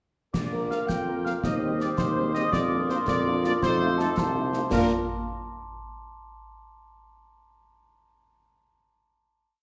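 At 0.3 s this short, spirited and proud military march for wind band strikes up in Bb major at 110 BPM in a straight 6/8, with a dark, punchy trumpet section carrying the melody, a soft, bell-like glockenspiel played with rubber mallets doubling the tune at the octave, a mellow woodwind section holding sustained chords in the background, a clear, vintage tuba marking the bass on the beats, and a close, dry marching snare over a bass drum on the beat with dark clash cymbals, while a French horn section with light vibrato joins at 0.5 s with after-beat and sustained chords, all ringing in a recital hall reverb until the final Bb chord at 4.7 s.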